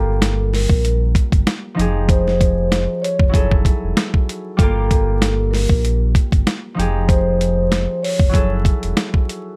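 Boom-bap hip-hop with a tough, dark mood, cut from a longer piece: a gritty, compressed, pitched-down sampler-style drum kit with a thumpy kick and high-tuned snare sits up front over a deep, sine-toned sub bass with octave, while a mellow vibraphone played with soft mallets carries the melody through plate reverb and slow motor vibrato, a fingerpicked concert harp rings out with a cassette-tape tint, and vinyl crackle hangs over the dry, close sound.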